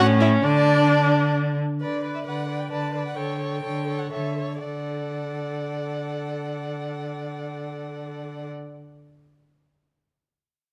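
Close, detailed microphones in a moderate scoring-stage reverb capture this lively, spirited excerpt from a quick classical-period string quartet movement in D major and 3/4 at 111-134 BPM, played with rubato and slowing down from 1.1 to 4.6 seconds, as a focused violin with vibrato and a smooth top carries the melody, a second violin shapes an expressive line with soft attacks and portamento, a smooth, even, distant viola supplies the accompaniment, and a rich, up-front cello anchors the bass, all four bowed by single players.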